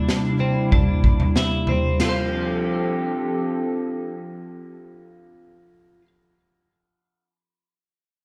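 A warbling, lo-fi pad and a bright twelve-string electric guitar open this short cut from a longer dream pop piece, with a raw garage drum kit joining at 0.1 seconds. The mood is blissful and ethereal at a straight 94 BPM in 4/4, in F major, moving from a C7 chord to F6 at 2.0 seconds. Up front, the nostalgic pad holds sustained chords with a slow attack and long release, its square-and-triangle tone dark and colored by chorus and its own reverb. The clean, picked guitar plays compressed, twangy arpeggios through lush chorus and delay, ringing on until 6.1 seconds, after the pad stops at 5.3 seconds. The drums are gritty and saturated, with a punchy kick, a medium-tuned snare, toms, and dark crash cymbals in a small, pumping room with a rolled-off top, all heard close before they stop at 2.1 seconds. A wet studio reverb, short at 0.5 seconds, gives the recording a gentle sense of space.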